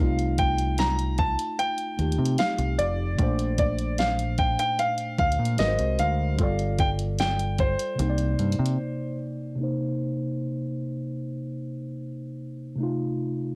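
Contemporary R&B in C dorian at 75 BPM, this sensual, moody cut from a longer piece pairs a smooth, vintage grand piano melody, colored by cassette tape and analog delay, with a mellow tine electric piano through built-in speakers, a dark, round fingered bass, and a produced drum kit with a knocking kick, fat snare and warm hats re-recorded in a small room. Chords move through F7/C, Bbmaj9, Ab9, Gsus2 and Cm9 before a break at 8.8 seconds, where bass and drums stop and the piano soon follows. From 9.6 seconds the electric piano carries on by itself under a filter sweep, with little reverb and the intimate character of a home cassette recording.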